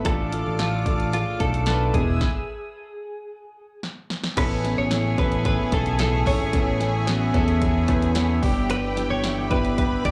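Anthemic and uplifting, this piano-driven pop excerpt sounds like a live gig heard through a club PA, with light reverb around the band. A warm grand piano with long sustain and a touch of slapback echo carries the accompaniment, while a lush, airy unison pad with chorus holds sustained chords in the background and a very quiet picked steel-string acoustic guitar plays a riff beneath them. A bright, punchy picked electric bass sits up front alongside a layered electronic house drum kit with a punchy kick and snare and bright hats. The kit enters a moment after the start together with a clean, compressed electric guitar that carries the melody through analog chorus and slapback echo. A stop runs from 2.2 to 4.4 seconds, with a drum fill from 3.8 seconds leading into the second section. At 4.4 seconds an intense, distant studio violin section with vibrato enters on a second line, adding lift as the harmony moves to Aadd9 and later Em7/G.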